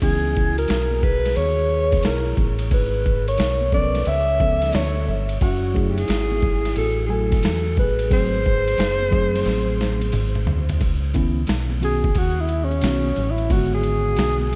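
A breathy alto saxophone leads this smoky, cool jazz-hop excerpt at 89 BPM, its whispered subtone, scooped notes and vibrato carried close and intimate over an analog delay. Beneath it, a gritty, compressed boom bap kit thumps up front with a tape-toned sound re-recorded in a large room, swinging the sixteenths, while a deep, round dub bass anchors the low end. A worn, slightly out-of-tune tine electric piano sits in the background with the ringing, metallic vibraphone, played with soft mallets and its motor off, which drops out at 10.1 s. A bright, dry egg shaker and hard-handed congas add quiet texture. The harmony moves through rich minor ninth and altered dominant chords, a drum fill at 9.5 s leads into a saxophone solo from 10.8 s, and the whole dreamy mix is soaked in cathedral reverb and vinyl crackle.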